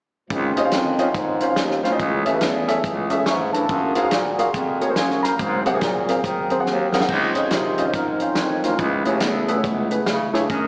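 A fat tonewheel organ with a slow rotary speaker carries sustained chords and then takes a solo from 7.1 seconds in this soulful, uplifting uptempo gospel fragment at 141 BPM in Db major with a swung feel, backed by a woody, slightly detuned upright piano with slapback echo, a clear, vintage bass clarinet up front on the bass line, a very quiet, mellow French horn section holding chords until 7.1 seconds, and a tight soul drum kit with dark cymbals that plays a fill at 6.7 seconds, all heard like a live gig through the venue's PA with recital hall reverb and a small speaker sound.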